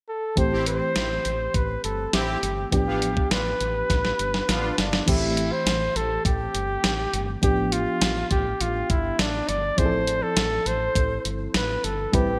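Dramatic and urgent, this 1980s-style pop excerpt puts a punchy flugelhorn melody with vibrato up front, over an FM electric piano with tremolo, a dark, round fretless electric bass, and a clean 12-bit drum machine with a thumpy kick and gated reverb. Fat, detuned analog synth brass stabs with chorus and digital delay sit in the background until 4.7 s, and a drum fill from 3.9 s leads into a new section at 5.1 s. The bright digital production is bathed in a lush hall reverb.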